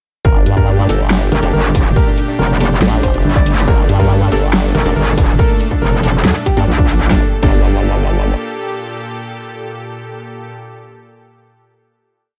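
A heavy, menacing half-time wobble dubstep piece in G minor at 140 BPM opens straight into its drop at 0.2 s, with a brilliant concert grand piano playing a repeating riff melody in sixteenths over a pedal note, a lush, detuned supersaw pad pumping under sidechain, a formant-sweep wobble bass, and a distorted, tape-warm electronic kick up front. A dubstep kit with a huge snare, bright hats and crashes adds to the half-time beat, while a second, metallic FM wobble bass, aggressive and overdriven, answers the first with modulated phrases of changing wobble speed. Very quiet orchestra-hit-like stabs, bold and punchy with a noise layer and a moving notch, drop sparse echoing chords moved in parallel, and a brief electronic zap sits in the background as a transition effect. The metallic bass drops out at 7.1 s as the final chord arrives, the drums fall away by 7.6 s and the formant bass by 8.4 s, while the pad rings on until 10.5 s and the stabs and piano carry on until 10.8 s. 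The mix feels chaotic, bathed in a digital ambience, with both wobble basses and the kick pushed hardest.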